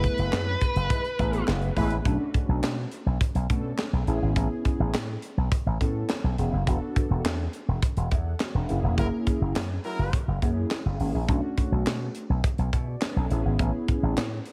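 A punchy slap bass runs through an envelope filter and sits up front, bright and amped at the core of this slick, late-night slice of early-eighties boogie funk, cut from a longer piece. A tight acoustic kit with a high-tuned snare, tight kick, hi-hat and handclaps holds a straight groove in a small room. Mellow synth brass carries the accompaniment throughout, sawtooth-based, detuned and full-bodied with chorus, vibrato and a filter sweep, moving through chords such as F#m11, Bm7, Amaj7, E9sus4 and F#7. A dark, overdriven lead guitar with a parked wah and tape echo plays a brief nasal melody that stops by 1.4 s. A warm horn section with a smooth top and light vibrato adds a quiet second line from 0.9 s and returns at 9.0 s, when the band hits a shared accent. Light reverb and a small room ambience keep the sound close.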